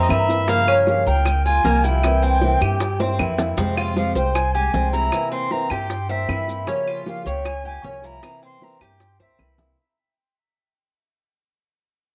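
Danceable and warm, this short cut from a longer piece moves at 155 BPM in a straight 4/4, with a Cuban son and guajira lilt that settles into F harmonic minor from 3.6 seconds. A distant, airy flute carries the melody with vibrato and tongued notes, trailed by tape echo, while a brilliant, punchy trumpet adds a forceful second line only in the opening 0.8 seconds. Up front, the picked Cuban tres spins metallic arpeggios on its doubled strings, and a thumb-plucked nylon-string guitar fills in classical accompaniment beneath it. The pizzicato upright bass sits forward with a dark, thumpy gut-string tone, supported by round, low-tuned bongos and woody, band-limited claves in the background, plus grainy, dry maracas. Drum fills mark the turn at 3.0 seconds and again near the close, as the music fades out from 3.6 seconds onward in a small room with moderate spring reverb.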